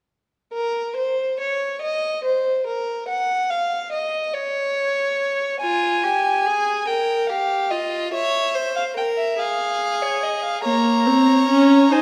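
Solemn and driving, this baroque-style fugue for string quartet moves in a slow 6/8 at 48 dotted-quarter beats per minute in Bb minor, cut from a longer piece. A single violin opens the subject alone at 0.5 seconds, its bowed line rich and smooth with even vibrato, set up front. A second violin enters at 5.6 seconds with its own line in a lower register, as the harmony settles on F minor and passes through a suspended chord and a diminished one. The viola joins at 10.6 seconds with a fuller, louder presence beneath the two violins, arriving as the music resolves to Bb minor. A wet recital hall reverb surrounds the players, lending the counterpoint a resonant, grave air.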